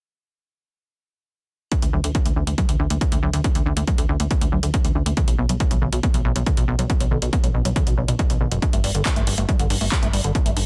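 A dense, heavily limited modern master with digital ambience carries this uplifting, euphoric trance piece at 139 BPM in D major, where everything enters at about 1.7 s over D5, B5 and Gsus2 chords. An up-front, overdriven electronic kick re-recorded in a large room leads the drums alongside an analog drum machine's handclaps and hi-hats, whose hats pump with sidechain, while a punchy, funky plucky bass of sawtooth and pulse waves sits forward with its own sidechain pumping. Above them, a squelchy, resonant liquid acid bass plays square-wave arpeggios through chorus, delay, vintage 12-bit sampler grit and sidechain pumping, with a filter sweep running across it until the excerpt ends at 10.7 s.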